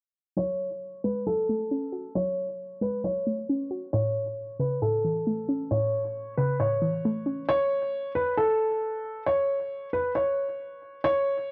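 A dark, mellow concert grand piano melody with a boxy, deep-bass tone leads this brooding half-time hip hop excerpt at 135 BPM in F# minor. It sits over a soft, round, chorused pluck accompaniment under a filter sweep as the harmony moves from F#madd9 to A, until the pluck drops out at 7.5 seconds and the piano carries on alone to 11.5 seconds, framed by light small-room reverb and a dry, gritty hardware sound.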